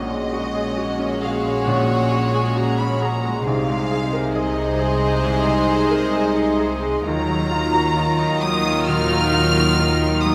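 Cinematic, emotional film score for orchestra, uplifting and hopeful in mood, unfolding with a rubato feel in this short excerpt cut from a longer piece. A dark, intimate violin section carries the melody with light vibrato and soft sul tasto bowing, over a floating second violin line, a clear grand piano and a pure viola section in the background, mellow French horns holding sustained chords, and very quiet, ringing harp arpeggios. Underneath, a rich cello section and a close chamber double bass section share the bass, all set in a wet scoring-stage reverb as the harmony moves from F#add9/A# through G#/B# to D#madd9.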